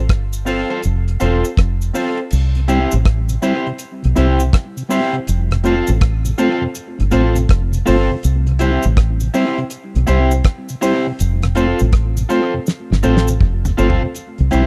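Roots reggae with an uplifting, sunny mood at 81 BPM in C major, this excerpt from a longer piece rides a swung groove over F and C chords, anchored by a deep, round, foam-muted fingered bass and a damped 70s drum kit with a fat snare, tight kick and dark cymbals, both up front. A twangy, slightly broken-up electric guitar with dub echo and worn baby grand piano stabs come in at 0.5 seconds, a soft, flute-like tonewheel organ with key click, slow rotary speaker and tape echo joins at 2.6 seconds, and a vintage, band-limited cabasa adds texture beneath. A drum fill at 12.7 seconds caps this dry, close 1970s-style studio recording.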